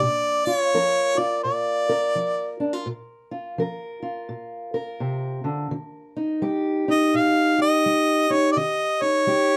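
A clear, up-front harmonica carries the melody in this soulful, laid-back acoustic country blues excerpt, playing in a jazz style with vibrato, tongue slaps and scooped notes, then pausing at 2.6 seconds and returning at 6.9 seconds. Underneath, a boxy parlour steel-string guitar is fingerpicked throughout, also up front, with a swung 84 BPM 4/4 feel in Bb major that moves from Bb to Eb. Light reverb and a dark, warm production round out the duo.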